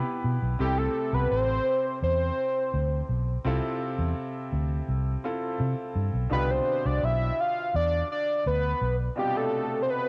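Recorded at home on cassette with a faint mains hum, light reverb and a small-room ambience, this romantic, uplifting slice of 1980s-style pop moves through Em, C6, Fmaj7/C and G7 in a straight 4/4. A fat, nasal analog lead carries the melody up front from 0.6 seconds, its detuned sawtooth and square-wave tone thickened by a sub octave, chorus, vibrato, a filter sweep and a touch of tape grit. Beneath it, a bright grand piano with a brilliant, natural tone plays softer accompaniment with cassette coloring, while a dark, foam-muted fingered electric bass, round and punchy with transformer saturation, sits prominently until 9.1 seconds.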